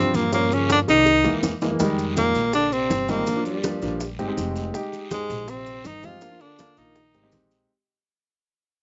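A breathy, close-miked tenor saxophone with scooped notes carries the melody up front in this sunny, sophisticated Afro-Cuban jazz excerpt at 163 BPM, joined by a growling trombone second line in the background, both touched with slapback echo, over a warm concert grand piano with deep bass and short sustain, woody pizzicato upright bass, tight high-tuned bongos, ringing congas, raspy guiro and grainy maracas, with a drum fill from 0.9 to 1.8 seconds before the fade-out begins at 1.8 seconds.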